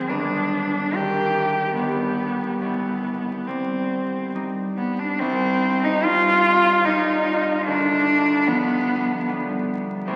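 A rich, bowed cello sings a yearning, elegiac melody in C minor over ringing, fingerpicked concert harp from the first moment, in a slow, rubato 3/4 at around 68-77 BPM. The vibrato-laden cello sits close and up front, smooth and even, while the harp stays further back, moving from G through Abmaj7 to Cm before the phrase begins again at 5.2 s and settles on G7/D. This romantic classical fragment, cut from a longer piece, is steeped in a long cathedral reverb and the crackle of a very old 78 rpm record.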